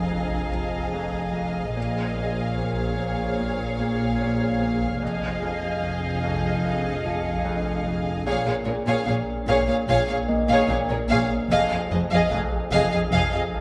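A moderate concert hall reverb surrounds this tense, mysterious excerpt of a cinematic suspense score in Bb minor at 74 BPM. A close, intimate chamber violin section carries the melody over a distant, woody symphonic violin line, a ringing, fingerpicked Celtic harp riff, and cello and double bass sections bowing sul tasto with light vibrato in the background, while a swarming, detuned granular drone sustains on Bb1 beneath. A felt-muted upright piano with audible action noise adds very quiet texture until 1.8 s and returns at 10.3 s, and between 1.8 and 7.8 s a dark studio violin section hovers high in the background as the harmony alternates between Fm7 and Bbm7.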